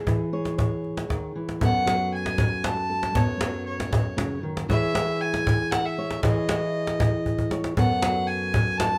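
A fingerpicked steel-string acoustic guitar opens this intimate, wistful acoustic folk excerpt in F# dorian, its dark concert tone joined almost at once by a woody, compressed cajon with faint snares, before a nasal, reedy fiddle with a gut-string tone enters at 1.6 seconds to carry the melody in a straight 3/4 at 117 BPM, all under light reverb, with a drum fill at 7.3 seconds leading toward a closing F#madd9 chord.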